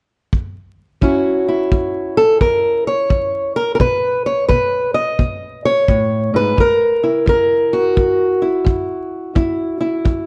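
A fingerpicked acoustic archtop guitar sits up front with a woody, boxy tone and the dark sound of old strings, carrying the melody from 1.0 seconds over a swung, laid-back acoustic country blues groove that moves through F#5, B and F#7. A punchy kick drum with a smooth, rolled-off top enters first at 0.3 seconds and keeps a rollicking pulse in a studio room. Light reverb and a layer of vinyl crackle give this short cut from a longer piece an aged, intimate feel.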